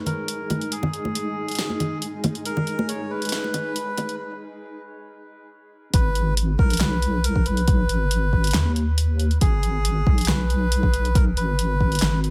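A half-time 4/4 pulse at 138 BPM drives this dark, brooding deep dubstep excerpt in G# minor, where a deep, wobbling sine-and-triangle bass sits up front under a reedy, breathy melodica with dub echo, a blurred, warbling granular cloud pad holds sustained chords until 5.9 s, bright, hard-handed congas play close and dry until 4.1 s, and a fat-snared deep house kit with handclaps and hi-hat carries on throughout while a tape-warm electronic kick joins at the drop at 5.9 s after a short break and a filter sweep on the melodica during the build-up.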